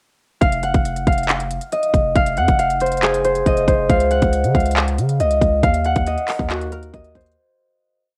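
Recorded at home on cassette with a digital ambience, this short, melancholic and eerie trap hip hop piece moves at 138 BPM in a half-time feel in F phrygian, built on a single hook over Fm7, Db and Ebm. An acoustic concert harp, thumb-plucked and ringing up front with cassette-tape colour, repeats a looping melody like a sampled loop, while a produced trap kit with a hard-clipped kick, crisp sixteenth-note hats, fast hi-hat rolls and handclaps drives a bouncy beat. Deep, mellow sine 808-style bass notes follow the kick with pitch slides. Everything fades out from 5.6 to 7.4 seconds, and the harp rings on alone until 8.2 seconds.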